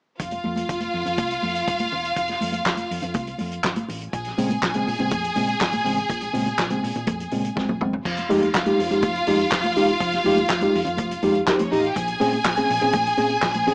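A lush, clear string section, heard from the start alongside bass and drums, carries the second line up front in this glamorous, danceable disco excerpt in F minor at 123 BPM, with bowed vibrato and a smooth top. Beneath it, a dark, round fingered bass on a hollow-body short-scale electric sits low and punchy. A warm soul drum kit with a fat snare, tight kick, hi-hat, handclaps, toms and crash keeps a straight 4/4 pulse, while high-tuned, damped congas played with soft hands sit close and dry in the background. At 4.1 seconds a clean tine electric piano enters as accompaniment on a Bbm7 chord, heard through its built-in speakers. A drum fill at 7.6 seconds leads into the next section, which moves to Fm7 before returning to Bbm7. The whole mix has a small-speaker character, with moderate plate reverb across it.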